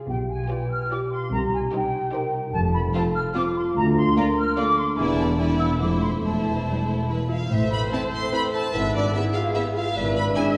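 A straight 3/4 lilt at 147 BPM drives this playful, whimsical film cue in A minor, cut from a longer piece and heard from further back in a wet concert hall. A focused, bowed violin section carries the melody over a second violin line, a soft-attack viola section, dark cellos and smooth double basses, while a ringing, thumb-plucked harp spins arpeggios, a mellow French horn section holds sustained chords, and a pure, straight-tone flute section adds its own second line. Around 7.5 seconds the mischievous, magical mood settles onto A minor as a clarinet, entering just beforehand, is joined by a light-vibrato oboe and a roomy bassoon in the background.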